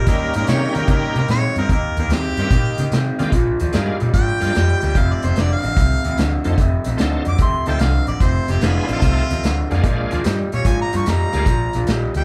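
A bright, close-miked harmonica with overdrive, light vibrato and scooped notes takes a jazz-style solo throughout this laid-back, rollicking electric blues shuffle at 148 BPM in Bb mixolydian, moving through Eb7, Bb7 and F7 over a dark, slightly broken-up lo-fi guitar riff, a round, foam-muted fingered bass, a shouting tonewheel organ with slow rotary speaker, overdrive and chorus vibrato, and a vintage kit of hi-hat, punchy kick, snare and splash with dusky cymbals in a pumping small room, the band captured live together with light reverb in a 12.2-second cut from a longer piece.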